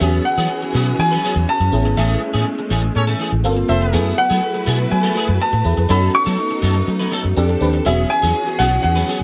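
A straight 4/4 pop groove at 122 BPM, tuned to A4 = 445 Hz, drives this nocturnal, slick fragment, anchored by a round, foam-muted fingered bass sitting up front. A natural baby grand piano with digital delay carries the melody over glassy, bell-like FM electric piano and a compressed, slightly broken-up picked guitar riff, both treated with ensemble chorus, while a distant, lush bowed string section holds sustained chords in light reverb. A vintage jazz-style horn section adds a brief second line between 3.0 and 4.0 seconds, overlapping a band accent, as the harmony moves through E69, Amaj7, Gm11, F#m11, B7/F# and F69 before returning to E69.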